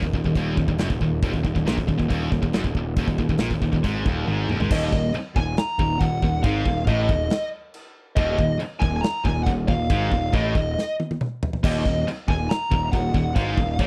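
A growly, fuzz-laden picked bass sits up front alongside a tight, polished drum kit in this aggressive, relentless heavy metal excerpt in Eb minor at 139 BPM, with a heavy high-gain guitar and a scooped, bright high-gain guitar grinding out a low riff in the background over an Ebm chord. After a drum fill, the feel drops to half time at 4.7 seconds, where a smooth, dark lead guitar with slapback echo takes the melody up front and a double-tracked overdriven rhythm guitar joins the riff, with another drum fill at 10.8 seconds. The sound is dry and close in the manner of a 1970s studio, with a small room reverb giving the airy kit its space.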